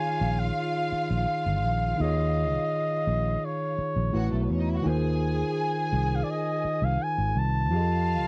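A straight 4/4 pulse at 84 BPM carries this short soul excerpt, silky and cinematic in mood, cut from a longer piece. A warm flugelhorn sings the melody from the first moment, up front and punchy with light vibrato and a smooth top, ranging from Db5 to A5. Beneath it, a tine electric piano plays the accompaniment, lightly overdriven through a combo amp, while a dark, woody studio string section adds a lush bowed second line with vibrato. A vintage muted fingered electric bass enters at 0.2 seconds, round and foam-muted, sitting low between G1 and F2. The harmony moves from Eb9sus4 to A6 and Ab6 before landing on F9, all captured in a dry, close 1970s-style studio sound with little reverb.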